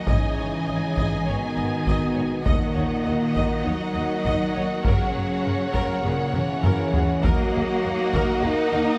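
Set in a moderate scoring-stage reverb, this epic, dramatic passage from a longer orchestral film cue is driven by a compressed, saturated taiko ensemble played with heavy sticks, which adds a drum fill at 6.3 seconds. Lush violin sections with vibrato carry the melody and a soft-attacked second line in the background, while mellow French horns, present trombones and an expressive string section with portamento hold sustained chords over a warm cello bass and rich, even double basses. A focused, close viola section supplies accompaniment, and a very quiet timpani on calf heads sounds only briefly, from 2.5 to 3.3 seconds.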